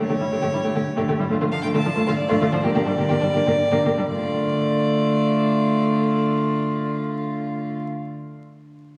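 Heard from further back in a reverberant concert hall with vinyl crackle, this stormy, restless excerpt from a quick classical-period movement for string quartet in triple time moves with a rubato feel, slowing between 0.6 and 4.1 seconds. A rich, close first violin carries the melody high above a second violin with a nasal, distant line, while the viola, gut-strung with light vibrato, sits up front in the accompaniment. The cello holds a dark, smooth-topped bass, and all four period-style players share a reedy bowed tone.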